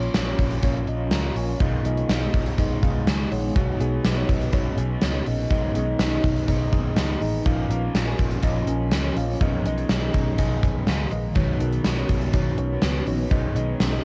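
Nostalgic yet urgent 1980s-style pop at 123 BPM in G# dorian, built on a polished gated drum kit with a tight kick and tambourine up front, a growly picked electric bass, a dreamy FM electric piano with chorus and tremolo that adds short fills around 2.8 and 9.9 seconds, a bright overdriven guitar soaked in lush chorus, and an ethereal phased pad that enters at 0.7 seconds in the background, all cycling through A#m, G#m/B and Badd9 with the character of a cassette home recording in this fragment of a longer piece.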